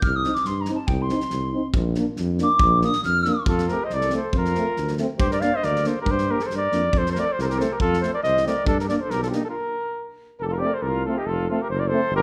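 A silver concert flute opens this festive Balkan brass band piece with a pure, crisp-edged straight tone, set back in the mix and played expressively, over a mellow tuba bass with light vibrato and a loose acoustic drum kit of fat snare and tight kick; a smooth-topped French horn and a roomy, far-off euphonium slip in moments later with quiet accompaniment in the background. The tempo is a brisk 139 BPM in 2/4 with a light swing on the sixteenths, and the harmony moves from C minor to B-flat before settling around F and G minor. At 3.5 seconds a warm, classical-style flugelhorn takes the melody up front, while the horn and euphonium continue their quiet support beneath it. The drums drop out just before a stop at 9.5 seconds, after which the band returns on F, and the flugelhorn, flute and tuba carry through to the cut at 12.2 seconds. A moderate recital hall reverb gives the exuberant ensemble a spacious, concert-like sheen.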